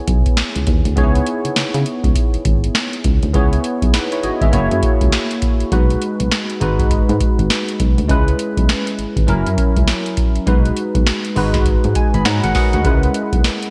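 R&B in a new jack swing style, this bouncy, confident excerpt moves at 101 BPM in 4/4 with a 62% swing on the sixteenths, set in C# dorian. A booming analog drum machine drives it up front, with a deep kick, crisp snare and metallic hi-hats dressed in gated reverb. Underneath, a solid FM bass sits low with a punchy, round tone, a fast attack and a mellow decay. A barky tine electric piano carries the chords with a bell-like, clean sound through analog chorus, adding a fill from 11.7 to 12.8 seconds. The harmony cycles through C#m7, F#7, B6 and G#m7, with a shift into a longer second section at 3.3 seconds. Light reverb and a bright 1980s-style digital production give the whole excerpt a polished sheen.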